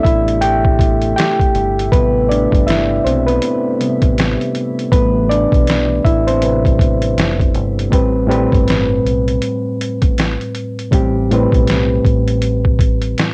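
Lo-fi hip hop in A minor at 80 BPM, this melancholic, hazy excerpt from a longer piece moves in 4/4 with a lazy 16th-note swing and opens on an Am9 chord. An overdriven reed electric piano sits up front with a gritty, reedy tone through a combo amp and cassette tape coloring, taking a solo from the start until 7.9 seconds and then carrying on as accompaniment to the end. Behind it, a dark analog pad holds slow-attack, detuned sustained chords with subtle chorus, lingering in the background until it stops at 7.9 seconds as the second section begins. The sampler-style drum kit is compressed, pitched down and muffled, with a thumpy kick, medium-tuned snare and hi-hat sitting up front. A deep dub fingered electric bass adds round, dark low notes underneath, all set in a light reverb with the character of a home cassette recording.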